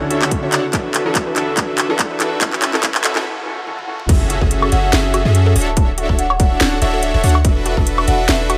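Swung half-time 4/4 at 143 BPM drives this bittersweet, emotional future bass excerpt in F# minor, where a fat, detuned sawtooth polysynth riff with sidechain pumping and delay rides over a natural-sounding grand piano, a breathy pad, a very quiet punchy pluck arpeggio, electronic risers, and a trap kit of sharp snare and metallic hats beside a hard-clipped kick, building through a filter sweep on the polysynth and a short break until the drop at 4.1 seconds brings a deep, boomy 808 bass, a dreamy lead arpeggio and, from 4.7 seconds, a ringing vibraphone melody set in the background.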